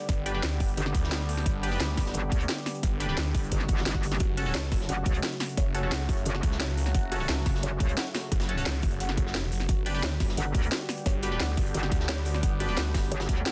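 A dense, heavily limited mix opens this dark, mechanical excerpt of technical drum and bass at 175 BPM, where a tight electronic kick and a crisp, cracking kit ride up front over a very quiet, gritty breakbeat kit, a snarling distorted saw bass and a metallic, chorused wobble bass (which drops out between 8.0 and 10.4 s) growl on the chords G, F#m and G, a sweeping resonant pad pumps with phaser, a nasal band-passed chord stab echoes in the background, a faint electronic swell arrives at 3.7 s, and from 4.2 s a mellow felt-muted upright piano plays arpeggios with audible action noise.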